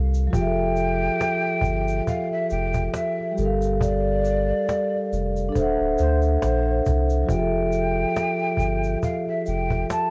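Lo-fi hip hop with a nostalgic, reflective mood, cut from a longer piece and swung on the sixteenths. A vibraphone played with soft mallets carries the accompaniment up front, its ringing, metallic tone softened by a low-pass filter, while a deep, round dub sub bass sits close beneath it from the start and stops at 9.8 seconds. A snappy cajon struck with soft hands and a grainy, bright egg shaker keep the groove, the shaker far down in the mix. From 0.3 seconds a breathy, hollow jazz flute takes the melody from a distance, its tongued notes carrying chiff and vibrato under its own low-pass filter. The harmony moves from Fmaj9 through Gm7 and D7 before returning to Fmaj9 as a new section begins at 7.3 seconds, all set in light reverb and small-room ambience with the worn, warbling pitch drift of old cassette tape.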